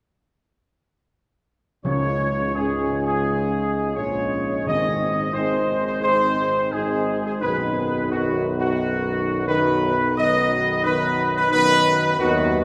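Classical brass music in Db major at 87 BPM in a straight 4/4, solemn and regal, cut from a longer piece, with a clear trumpet section carrying the melody up front with light vibrato. Beneath it the mellow French horn section and soft-attacked trombone section hold sustained chords, the smooth-topped tuba anchors the bass, and hard-mallet timpani sound articulate in the background until 5.6 seconds. The harmony moves from Db to Ab to Cb, all bathed in a wet cathedral reverb with a long 5.4-second decay.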